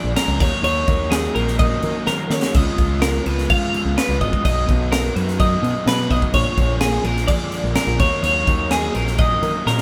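A straight 4/4 pulse drives this short, wistful yet bright math rock and midwest emo excerpt, where a crisp, high-tuned fusion drum kit with a punchy kick enters at 0.2 seconds and drops fills around 2.1 seconds and again at 9.7 seconds. A clean, twangy twelve-string electric guitar spins arpeggios through spring reverb over a double-tracked, overdriven garage guitar riff and a growling fingered bass, moving through D#m7, C#9, Bmaj7 and A#7#9 chords. The whole band plays live in a stone room with moderate reverb, the airy drums sitting up front.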